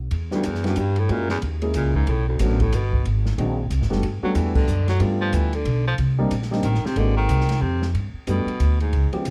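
A breathy, soft-attack baritone saxophone carries the melody and takes a solo from 7.9 seconds in this relaxed small-group swing-and-bop jazz excerpt in 3/4, over a woody, growly pizzicato upright bass up front, a warm grand piano accompaniment and an airy acoustic drum kit with dark cymbals and a boomy kick, with the band hitting an accent at 4.5 seconds in a dark production with light reverb.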